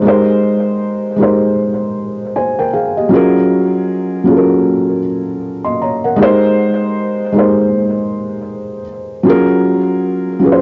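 Nostalgic and mellow, this short cut from a longer hip hop piece moves at 78 BPM with a 16th-note swing in Ab major, as a lone felt-muted upright piano, soft, dark and intimate with thick felt and an up-front presence, alternates between Abmaj9 and Gbmaj9 through cassette tape coloring and tape echo in moderate booth ambience, its home-recorded sound dulled above 7.7 kHz.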